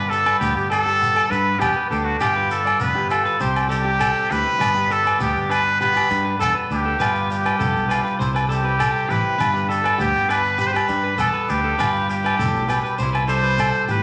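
A large, wet studio reverb surrounds this sunny, danceable highlife guitar-band passage, cut from a longer piece and moving at 100 BPM in a straight 4/4 in G major. Up front, a trumpet with a straight mute carries the melody in a pop style, its tone brilliant and nasal with light vibrato, close-miked and punchy. A clean electric guitar supplies bright, compressed, twangy picked accompaniment, while a second electric guitar at the edge of break-up adds fingered arpeggios with a warm, slightly broken-up bite. Underneath, a fingered electric bass sounds round and direct, agogo bells ring close and dry, and a grainy, mellow shekere sits in the background from 0.1 seconds. The harmony cycles through G, G7 and C, with the phrase beginning again at 4.6 seconds.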